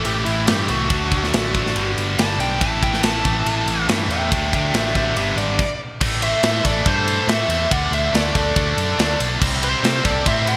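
A bluesy overdriven lead guitar takes a solo from the very start of this menacing, driving hard rock excerpt at 141 BPM in A dorian, over double-tracked high-gain riffing, a growly, punchy picked bass and an up-front metal drum kit with a medium-tuned snare and rolled-off top. A compressed distorted rhythm guitar sits in the background until the band hits a short stop at 5.6 s, and from 6.2 s a dark octave-fuzz lead guitar adds a second line behind the lead melody. Bright 1980s-style digital production and a lush hall reverb give the mix its size.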